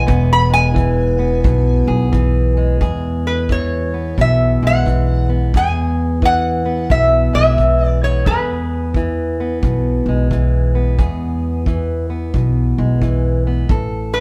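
A metal-body resonator guitar played with a steel bar and fingerpicks opens this laid-back, rollicking acoustic country blues with a solo passage over an E chord, its bright, nasal, metallic slide melody sitting up front with a touch of plate reverb. Cut from a longer piece, the track moves at 88 BPM in 4/4 with swung eighths, in E major, tuned slightly below standard pitch to A4 = 438 Hz. Beneath the slide, a fingerpicked, plugged-in jumbo steel-string acoustic guitar carries the accompaniment, its old strings giving a woody, full-bodied tone that also sits up front. A pizzicato upright bass strung with steel adds a warm low end, while a tight, natural kick drum played with brushes enters at 0.1 seconds with a small-room character. The whole group is heard from further back in a moderately reverberant studio, and at 13.7 seconds the harmony moves to an A5 chord just before the cut.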